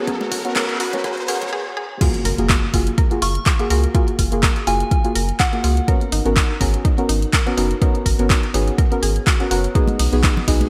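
A swung, relaxed deep house groove of an up-front electronic kick, a layered kit of handclaps, hi-hat, ride and crash with gated reverb, and background congas carries a round, dark analog bass, deep mellow chord stabs with chorus and delay, and woody mallet-like synth plucks that pump under sidechain, while a riser, a very quiet warbling tape-like pad and filter sweeps build toward an impact at 2.0 s and a pure, gentle synth bell melody with phaser floats above from 3.2 s to 5.9 s, set in a bright 1980s-style digital mix with lush hall reverb.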